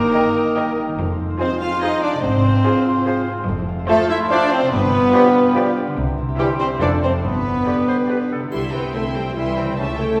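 Magical and mischievous, this playful, whimsical cinematic cue moves in a straight 3/4 at 144 BPM and settles into C major from 3.5 s, its lush, vibrato-rich violin section carrying the melody over up-front, punchy French horn chords, ringing fingerpicked concert harp arpeggios, and a bowed bass of an intense cello section and a focused double bass section. Around them weave second lines from a soft-attacked, roomy cor anglais, a bright clarinet in the background, a pure, hollow flute section and a distant second violin section with portamento, while a very quiet viola section and a lightly vibrato-touched bassoon fill in the accompaniment. A faint triangle chimes in at 8.5 s as a new section begins, and the whole ensemble sits in the lingering wash of a concert hall reverb in this excerpt cut from a longer piece.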